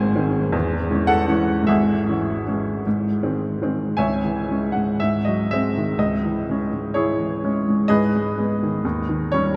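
A clear, natural baby grand piano sits up front and plays alone throughout this brief fragment of a romantic character piece in C# minor, its short-sustained notes spanning G#1 to G#5 and bathed in a wet cathedral reverb with a 5.0-second decay. The mood is stormy and passionate, moving in a slow, rubato 2/4 at 50-64 BPM as the harmony circles between C# minor and G#. A second section begins at 4.0 seconds, drifting through G#7 and G# minor before landing on D#7 at 8.8 seconds.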